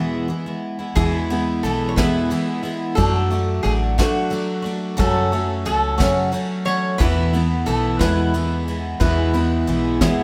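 A moderate large-studio reverb, about 0.9 s long, gives this short excerpt from a longer acoustic folk piece a spacious, peaceful and pastoral air. In an unhurried 6/8 at 60 dotted-quarter beats per minute, a picked twelve-string jumbo guitar sits up front from the start, its octave-doubled strings shimmering and full-bodied. Above it, a lap resonator guitar played with fingerpicks and slide adds a metallic, nasal second line. At 1.0 s the rest of the small band arrives: a felt-muted upright piano spreads soft, mellow, intimate arpeggios with audible action noise, and a pizzicato upright bass on gut strings sounds woody, dark and thumpy. A soft brush drum kit with punchy kick, medium-tuned snare and ride cymbal adds a natural small-room touch. The harmony moves from E to D and F#m, then settles through Esus4 back to E.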